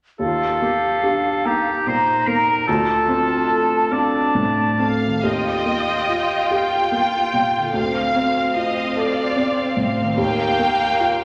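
A lush scoring-stage reverb surrounds this cut from a longer piece, a moving, uplifting cinematic film score for orchestra in a rubato 6/8. An intimate baby grand piano sits up front with its action noise audible, carrying the accompaniment throughout, while a thumb-plucked concert harp rings out arpeggios in the background. At the start, clarinet, oboe and flute share secondary lines: the clarinet clear and smooth-topped toward the back, the solo oboe distant and roomy in a classical style, and the silver flute pure and metallic with vibrato and a soft attack. Around 4.8 seconds the winds give way to a violin section carrying the expressive melody with vibrato and portamento, and at 5.2 seconds a second, rich and even violin section joins with a supporting line. The harmony moves between Ebadd9 and Dm7 throughout.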